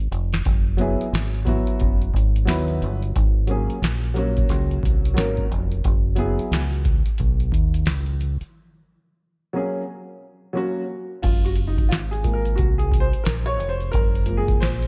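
Light reverb and a digital ambience give this smooth jazz-hop clip from a longer hip hop piece a warm sound, with each instrument sitting up front. A booming analog drum machine opens with a fill, then settles into a swung groove at 89 BPM in 4/4, its deep kick, crisp snare, metallic hi-hats and crash cymbal carrying a tape-warm, electronic character. Underneath, a deep dub fingered electric bass holds the low end with a dark, round, punchy tone that sounds direct and amped. A grand piano enters at 0.8 seconds with mellow, vintage-toned chords of short sustain, bathed in lush chorus, moving between F#9sus4 and G#9sus4 in F# mixolydian. A break arrives at 8.5 seconds, and at 11.2 seconds the harmony shifts to Gbmaj9 in Gb lydian as the piano steps forward for a solo that carries through to the end.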